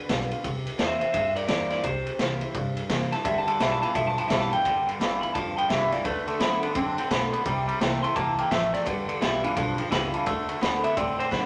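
The sound is close and lively, set in a moderate studio reverb that gives this short cut from a longer rockabilly piece a small-room punch. At 171 BPM in 4/4 with a swung eighth-note feel, the upbeat, rowdy groove sits in G mixolydian and cycles through C7, G7 and D7. An electric guitar through a small old amp carries the melody as a solo throughout, its tone bright and slightly broken-up with a picked twang. Underneath, a picked steel-string dreadnought acoustic guitar plays fresh-stringed, full-bodied accompaniment with audible finger squeak, while a pizzicato upright bass thumps out woody low notes. A raw garage drum kit sits up front, its kick, snare and ride sounding saturated and gritty with a boomy low end and a rolled-off top. From 3.2 seconds a second, clean twangy electric guitar adds a scooped, vibrato-treated riff that stands prominently in the mix.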